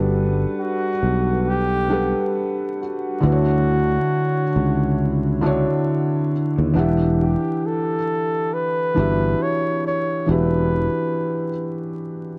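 A felt-muted upright piano, a sustaining fretless electric bass and a warbly tape-like pad begin together, setting a melancholic, hazy lo-fi hip hop mood at a slow 68 BPM in 4/4, with swung sixteenths and an E dorian colour. The piano sits up front, soft and dark with thick felt and audible action noise, its tone muffled by a low-pass filter. The growly, amped bass anchors the low end, while the detuned, chorused pad lingers in the background with its own reverb until about 6.7 seconds. At 0.6 seconds a breathy, close-miked flugelhorn takes the solo melody, its scooped notes softened by filtering and trailed by analog delay. The harmony moves from Gmaj7 to Dmaj7, then settles on Em9 as the second section begins at 6.8 seconds, and light reverb with a layer of vinyl crackle rounds out this excerpt.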